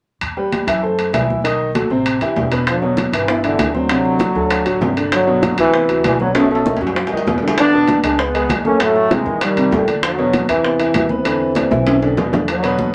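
Upright bass, congas and timbales open this fast, danceable salsa excerpt in E minor at 196 BPM, with a clear, boxy concert grand piano joining at 0.4 seconds over a woody, thumpy pizzicato bass, high-tuned background congas and ringing metal-shell timbales, before a punchy, up-front trombone section with light vibrato takes the passionate melody at 2.7 seconds alongside round, low-tuned bongos, drum fills arriving at 6.3 and 11.3 seconds in a small, wet room.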